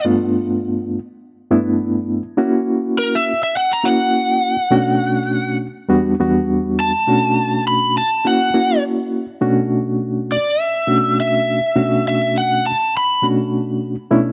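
Blues excerpt at 102 BPM in 4/4 with a light 16th-note swing, smoky and brooding in B minor (tuned to A4 = 442 Hz), where a bright, overdriven electric slide guitar played with fingerpicks carries the melody up front over a reedy, clean electric piano with fast tremolo through its built-in speakers, the chords moving from G7 and F#7 into Bm7 and Em7 under light reverb and digital ambience, before the slide guitar takes a solo from 9.4 s and drops out at 13.2 s, leaving the piano alone until 14.3 s.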